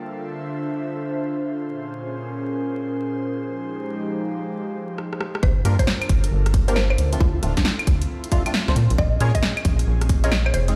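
A swung, skippy two-step UK garage groove drops in at 5.4 seconds after a punchy, overdriven analog drum-machine fill of claves, hi-hat, rim click and snare. From there, a tight, layered electronic kick, an up-front, saturated rubbery square bass and a woody, round mallet-like synth pluck carrying the melody through phaser and delay are joined at 5.7 seconds by hollow, percussive organ stabs. All of them sit over the soulful haze of an airy, breathy chorused pad that pumps through the whole clip, while a warbling, lo-fi tape-like pad stops at 5.0 seconds, and the sound feels like a big system in a bare stone room, dusted with vinyl crackle.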